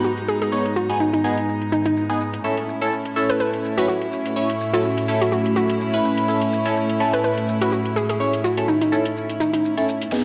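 A bright, nasal, band-passed sawtooth chord stab sits up front in this aggressive, bouncy bass house excerpt, with phaser, digital delay and sidechain pumping, while a bowed chamber string section with reedy gut-string tone and light vibrato holds sustained chords from G#m to A at 2.4 seconds through a low-pass filter. A hollow, detuned square-wave pluck carries the mellow melody with chorus, 12-bit sampler grit and delay until 9.6 seconds. Overdriven garage drums with a cracking snare, hi-hat and shaker stay in the background, an electronic kick appears only at 10.1 seconds, and the dark production is bathed in lush hall reverb.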